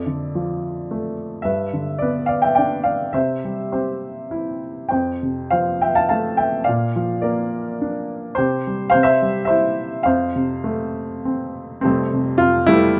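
Close and up front, this short passage cut from a longer classical piece sits in a light reverb that gives the room a gentle glow. A solo upright piano, warm and woody with a short sustain, carries the lyrical music alone for the full 13.0 seconds, ranging from F1 up to A5. The feel is relaxed and hopeful, in F major and 3/4 time at around 104 BPM, with uneven beats and a rubato give and take. The harmony moves from Dm/F through G, C and F to Bb, then settles back through C onto F. At 11.8 seconds the opening phrase begins again over an Fadd9 chord, where the passage is cut off.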